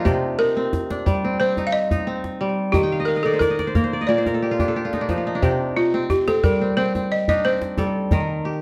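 Reflective and flowing, this excerpt of West African string and xylophone music moves at 89 BPM in a straight 4/4, in C dorian over Cm, Eb and Bb chords. A bright, ringing, fingerpicked kora sits up front with slapback echo and plays a fill from 2.8 s, while a woody, buzzing balafon struck with rubber mallets carries the melody and a close, dry djembe with metal rattles keeps the percussion going. From 5.4 s the balafon takes a solo, and the whole piece sits in a moderate recital-hall reverb with a dark production.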